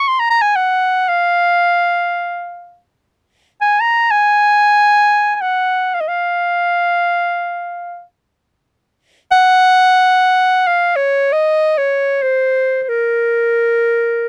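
Soulful and longing, this short passage, cut from a longer piece, comes from an Arabic maqam ensemble setting and unfolds in free time in F maqam kurd. A single clarinet carries the whole 14.3 seconds as an unaccompanied solo, ranging from Bb4 up to C6. Its tone is clear and shaped in a classical style, close-miked and placed up front so the line feels near. The recording has a dry, close 1970s-style studio sound, touched with light reverb. The result is an intimate meditation on a single voice.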